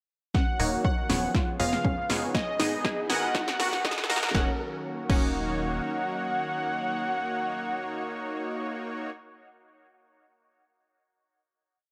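A moderate digital room gives this short, dreamy and expansive progressive house piece its space, with a punchy four-on-the-floor electronic kick and a deep house kit of smooth hats, snare backbeat and crash sitting up front through a drum fill and build-up that runs from 0.3 to 4.3 seconds. Over it, a tight sawtooth sequencer bass drives off-beat notes, a bright detuned pluck spins an arpeggiated loop in the background, up-front supersaw stabs hit off-beat chords, and a lush, thick unison pad holds sustained harmony, while filter sweeps open the pluck and the stabs and a very quiet riser marks the transition. At 4.3 seconds the music settles onto a final chord, where the catchy, vibrato-tinged lead with its cassette-tape grit and dub echo, repeating its riff since 0.3 seconds, carries on until it ends at 9.1 seconds alongside the stabs, and sidechain pumping makes the synth parts breathe.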